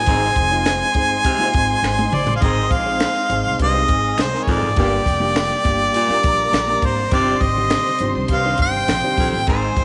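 Light reverb and studio ambience frame this joyful, danceable slice of uptempo 1960s-style soul at 102 BPM, where a clear harmonica with tape echo and scooped notes carries the melody up front over a bowed violin section and a smooth horn section on second lines, a gritty overdriven tonewheel organ with fast rotary speaker holding sustained chords, a background grand piano, a raspy, growling baritone saxophone riff, a woody pizzicato upright bass, a dry cocktail drum kit with punchy kick and a fill at 1.8 seconds, and faint finger snaps joining at 0.7 seconds.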